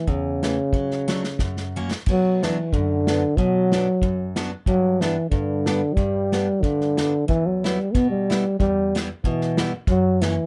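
A dark, smooth-topped euphonium with light vibrato carries the classical-style solo melody up front in this bouncy, jolly alpine dance-band excerpt, backed by a bright, full-bodied picked jumbo steel-string guitar and an airy, polished acoustic drum kit with a punchy kick and bundle sticks, whose fill at 1.4 seconds leads into the minor-key second section under light reverb, a dark production and a faint mains hum.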